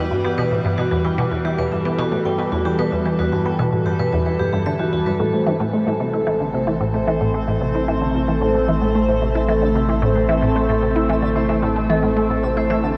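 Ambient, sequencer-driven space music at 112 BPM in A minor, this cosmic, expansive excerpt opens on an Emadd9 chord before settling onto A minor at 5.2 seconds. Up front, an evolving wavetable pad holds sustained chords with a slow attack and morphing unison tone, colored by chorus, phaser and shimmer reverb, while a juicy, squelchy blip pluck drives a resonant riff with a fast attack and short decay, treated with phaser, analog chorus and tape echo. A vibraphone played with medium hard mallets spins dark, metallic arpeggios with a slow motor vibrato through tape echo and shimmer reverb, and a filter sweep moves across it from 5.2 seconds onward. At that same point a round, deep analog bass enters on a low A, nasal yet warm, and at 6.6 seconds a very quiet granular texture adds twinkling, sparkling octave-up shimmer. The whole sits in a huge, wet ambient reverb with a long tail, and a worn cassette quality gives it a warbling pitch drift.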